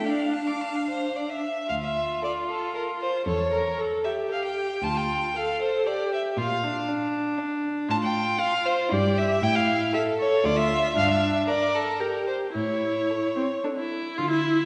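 A quick, graceful classical-period movement for string quartet opens in D minor at 108-119 BPM in 3/4, with a cheerful lilt as two violins, viola and cello enter together. A very quiet violin carries the expressive melody with vibrato and portamento, while a second violin sits up front with an even, smooth line above it, a clear viola fills in the accompaniment, and a focused cello anchors the bass, all bowed with vibrato. The harmony moves from D minor through Bb, F/A and Gm before settling on A, and the quartet sounds as if heard from further back on a reverberant scoring stage, cut from a longer piece.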